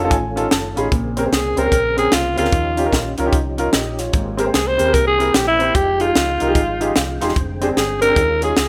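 Uptempo gospel at 149 BPM with a hopeful, jubilant swing, where a growling, raspy alto saxophone enters up front at 1.3 seconds over intimate grand piano with audible action noise and fills, a mellow tonewheel organ with key click and fast rotary speaker in the background, a round, dark hollow-body electric bass, and a crisp fusion drum kit with a high-tuned snare and punchy kick, all in a rough small-room home demo mix.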